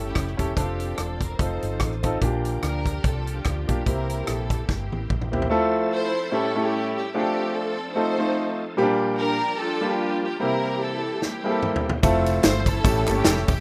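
Uptempo gospel at 147 BPM in F major with a swung, hopeful and uplifting feel, this short cut opens with lush, bowed strings carrying the melody through a slapback echo over clear, intimate baby grand piano with audible action noise. Behind them sits a bright, shouting tonewheel organ holding chords through a slow rotary speaker, light overdrive and chorus vibrato. The round, dark fretless bass and a punchy, natural drum kit drop out after a fill ending at 5.5 seconds, with the drums returning on another fill at 11.2 seconds and the bass rejoining at 12.0 seconds, alongside tambourine and group handclaps in the background of a rough demo mix with light reverb.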